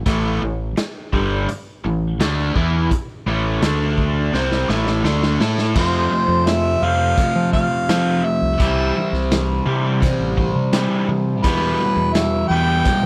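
A mellow harmonica enters at 5.8 seconds with a distant, roomy solo touched by slapback echo, floating over a gritty, swaggering classic rock groove in A minor at 84 BPM. Beneath it, a growling fingered bass with overdrive, a biting picked guitar and a hollow-bodied semi-hollow guitar run through a phaser drive the riff, while a raw garage drum kit with a punchy kick and rolled-off top keeps the beat throughout, having played a fill from 4.3 to 5.8 seconds that leads into the harmonica's entry. The sound is dry and close, in the manner of a 1970s studio, and this short cut from a longer piece moves through chords such as Am, F, C and Em.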